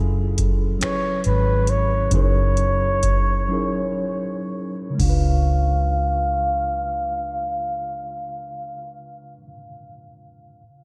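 A slow six-eight pulse carries this late-night, sultry R&B excerpt, easing back as it slows down over the first 5.0 seconds while a filter sweep colors the opening. A booming analog drum machine with a deep kick, metallic hi-hats, finger snaps and a crash cymbal plays from 0.4 to 5.2 seconds, and a break arrives from 3.5 to 5.0 seconds, just before the harmony shifts. Beneath it, a vintage foam-muted fingered electric bass gives a dark, round and punchy low end, while a worn, slightly out-of-tune tine electric piano, softened by a low-pass filter, supplies clean, direct chords over F#m7, F#13 and C#7b9. Up front, a breathy flugelhorn sings the melody with light vibrato, a soft attack and a smooth, whispered top, sounding intimate in a pop-style solo. The whole mix is soaked in a cathedral-like reverb, leaving a dreamy haze around every part.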